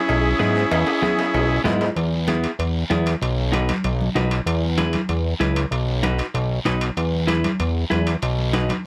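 Joyful and danceable, this cumbia snippet opens with a reedy, lightly vibrato combo organ melody bathed in plate reverb over a shimmering musette accordion line, both gone by 1.6 seconds, while a fat, detuned analog bass sits up front, a clean picked electric guitar accompanies, and saturated congas, ringing metal-shell cowbell and timbales and a raspy vintage guiro keep the groove churning through a drum fill from 0.7 to 2.0 seconds as the chords rock between E and B.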